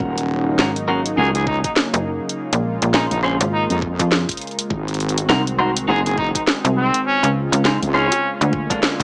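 Glitch hop at 102 BPM in Eb dorian, this funky, playful excerpt rides a swung sixteenth-note groove, cut from a longer piece. A smooth, detuned analog pad sits in the background with chorus and sidechain pumping, while a clean, twangy electric guitar plays picked stabs through pumping and dub echo. Two basses share the low end up front: a heavy, saturated wobble bass with chorus, and a snappy FM bass with a metallic attack that enters at 0.6 s. A knocking electronic kick sits under a drum and bass kit of cracking snare, rim clicks and bright hi-hats, both re-recorded in a small room. From 1.2 s a clear trumpet carries the solo melody with vibrato, sounding distant and roomy through dub echo. The chords move from Ebm7 through Bbm7, Ab7 and Dbmaj7 to Bb7, with a band accent at 8.8 s, all in a moderate reverb with a small-speaker character.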